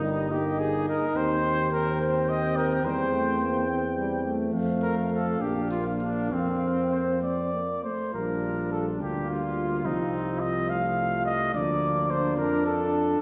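Triumphant and noble in spirit, this classical brass quintet passage moves in 6/8 with a flexible, rubato feel, cut from a longer piece. A mellow trumpet with light vibrato and a vintage, band-limited color carries the melody up front, while a second trumpet, close-miked with a soft attack and a warm tone, shapes the second line beneath it. In the background, a French horn sounds distant and roomy, and a punchy euphonium adds accompaniment, both touched with light vibrato. A clear tuba anchors the bass up front with a soft attack. The harmony travels from Eb/G through Cm/Eb and C/E toward F and Bb in the opening section, then a second section from 8.1 seconds settles through Bb, F7/C and Bb/D. All five players sound together throughout, set in a wet scoring-stage reverb that places the ensemble further back in the room.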